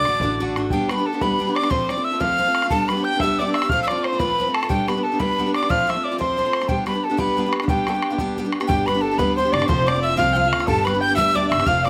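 Celtic folk jig in 6/8 at 120 BPM in G mixolydian, lively and cheerful and cut from a longer piece, where a breathy metal whistle carries the tongued, expressive melody with vibrato over a dark, distant bowed fiddle line, a bright picked steel-string acoustic guitar up front and a boomy bodhran, while a hollow wooden flute and a woody pizzicato upright bass, both heard briefly at the start, return at 8.7 s in this dry outdoor recording.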